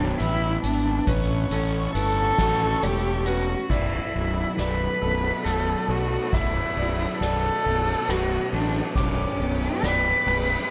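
Melancholic and cathartic, this post-rock excerpt in 6/8 sets a dark, woody bowed cello melody with tape echo up front beside a growly overdriven fuzz bass, while a clean electric guitar and a felt-muted upright piano with audible action noise trace background arpeggios, a lush studio string section sustains chords, and a soft-mallet drum kit with a boomy kick and dark cymbals drives a build-up and fill from 3.7 s, all set in a big arena-like hall reverb.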